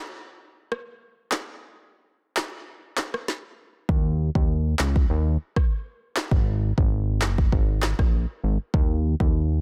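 Sultry and bouncy, this short dancehall excerpt moves in a straight 4/4 groove. An electronic afro-pop drum kit carries the opening break alone from 0.7 seconds, pairing a deep kick with a woody snare, rim clicks and handclaps, all pushed up front with a gritty overdriven edge. At 3.9 seconds a fat analog bass arrives, sitting low between Gb1 and Eb2 with a thick, detuned blend of sawtooth, square and triangle tones. Ring modulation and a filter sweep colour its fast-attack, sustained notes, giving the line a warm, mellow character that sits up front in the mix. The whole passage is set in a digital ambience and carries the dense, heavily limited sheen of a modern master.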